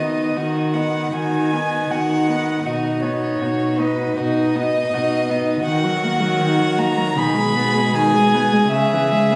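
A string quartet opens together at once in this slow, romantic classical movement in B major, a tender and serene passage cut from a longer piece, moving at about 79 BPM in 4/4 with a rubato feel. The first violin carries the melody between B4 and B5, sitting close and up front with an intimate, airy bow, light vibrato and a soft attack. Beneath it the second violin holds a pure, floating second line with a smooth top, while the viola's accompaniment and the cello's bass sound more distant. All four players bow sul tasto with gentle attacks, and the harmony drifts from B/D# through D#m and G#m/B before reaching C#m at 8.7 seconds. A recital hall reverb with a 1.7-second decay wraps the ensemble in a church-like glow, and the sound stays mellow, with a rounded, softened top end.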